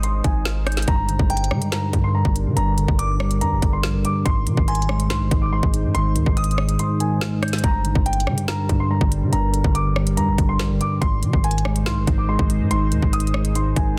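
A half-time drill groove at 142 BPM in G phrygian sets a menacing, tense mood. Hard-clipped kick, woody snare, rim click and crisp hats are up front beside a punchy, heavy 808-style bass with a noise layer. A dark, boxy concert grand carries the tape-echoed melody, its action noise audible, while a mellow tine electric piano joins at 0.9 seconds over Gm and Ab. A deep, detuned sawtooth pad sustains chords in the background, and a delicate, warbling FM tine bell twinkles a second line until 7.6 seconds. The kick drops out just before that point in this dense, heavily limited cut from a longer piece.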